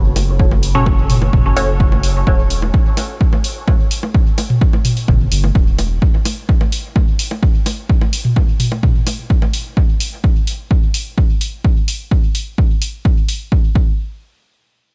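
A punchy, tape-colored electronic kick drum sits up front through this hazy, nocturnal dub techno excerpt in straight 4/4, carried by a dry, close sound. Beneath it, a round, deep analog bass with a dark, sustained tone pumps against the kick and drops out at 6.0 seconds, as the harmony shifts from F#m to Em before falling away from chords altogether. A muted, detuned chord stab flickers briefly through a phaser and dub echo, its filter pluck giving it a mellow bite. Layered electronic bongos and toms, also pumping and trailing dub echoes, run until 9.5 seconds. The quieter analog hi-hat, re-recorded in a small room, keeps ticking alongside the kick until about 13.4 seconds.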